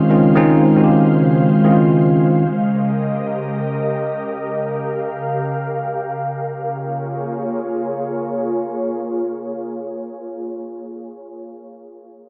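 Amapiano in free time and Bb dorian, this deep, late-night fragment from a longer piece opens with a bell-like tine electric piano, bright and clean, playing accompaniment up front for only the first 2.5 seconds beneath a filter sweep that runs until 6.6 seconds. An ethereal, airy pad holds sustained chords throughout, its detuned sawtooth tone warbling with a vintage ensemble chorus, slow attack and long release as the harmony moves from Dbmaj7 through Eb7 to Bbm7. The whole sits in a wet hall reverb and the stony echo of a big sound system playing in a bare room.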